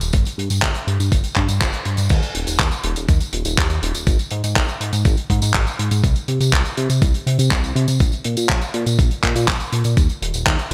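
A glossy, chorused synth bass and a dry, damped 70s drum kit open this sunny, danceable italo disco excerpt together, joined at once by a gritty, thumpy electronic kick drum that carries studio reverb and the sound of a large room. The kit's handclaps, hi-hat, tambourine and crash cymbal sit up front with a mid-forward, rolled-off character and gated reverb, while the dark bass ranges from Eb1 to C3 with a retro pulse-wave and sawtooth tone that evolves through pulse-width modulation and a moving notch. A band accent lands at 1.6 seconds, just before the music moves into a new section at 2.1 seconds that runs to the cut.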